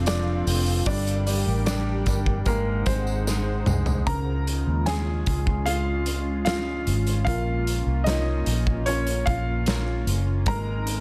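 Heartfelt and tender, this excerpt from a longer pop ballad moves at an unhurried 75 BPM in a straight 4/4, settling into D-flat major at 4.1 seconds. An intimate baby grand piano carries the melody, its action noise audible and close, while a woody, slightly detuned upright piano with a worn character supplies the accompaniment beneath it. A breathy pad with a slow attack and long release holds sustained chords, its mellow, faintly nasal tone softened by chorus. Up front, a dark, foam-muted fingered electric bass sounds round and punchy, joined by a loose acoustic drum kit with a tight kick, medium-tuned snare, hi-hat and toms in a pumping small room. A jingly tambourine sits in the background until 4.1 seconds, just as a drum fill starting at 3.3 seconds leads into the new key, and the whole piece has light reverb and a dense, heavily limited modern master.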